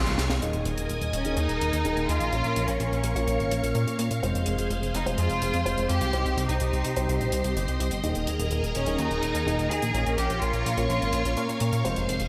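A straight 4/4 italo disco groove at 126 BPM opens on a band accent and a drum fill from the tight, dry funk kit with its high-tuned snare, as a glossy, nasal chorused synth bass drives up front beneath a swirling phased string machine, a rich, vibrato-laden symphonic violin section singing the melody until 11.6 seconds, and a dark, gritty sampled grand piano that stabs from 0.4 seconds under a filter sweep, all moving through Ebsus4, Bbm, Fm and Cm in a lush hall with bright 1980s-style digital polish, leaving a danceable, nostalgic mood in this excerpt cut from a longer piece.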